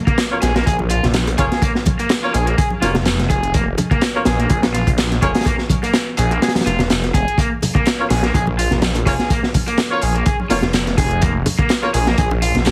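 A heavily compressed, radio-like sound with vinyl crackle and a small-room ambience frames this funky, swaggering breakbeat cut in Bb minor at 125 BPM, lightly swung and sitting on a single Bbm chord. A gritty, saturated breakbeat kit with a punchy kick sits up front beside a swirling, thick, phased saw bass, while an analog drum machine adds handclaps and hi-hat and close, dry bongos and congas play in the background. An overdriven, lo-fi garage guitar riff with dub echo runs from 0.1 to 12.5 seconds, and a tight, vintage horn section fires clear stabs in octave doubling, roughened by sampler grit and echo.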